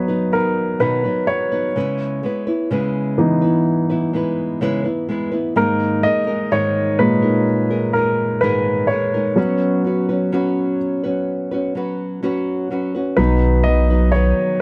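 A clear, polished baby grand piano carries this tender, heartfelt pop excerpt in B major at a slow 63 BPM, with a small, fingerpicked nylon-string guitar playing arpeggios through a progression from B to C#m7, G#sus2 and F#sus4, a very quiet electronic impact sounding at the opening until 1.8 seconds, and a deep, thick, saturated sub bass entering up front at 13.2 seconds as the chords return to B, all in a dry, close 1970s-style studio sound with light reverb.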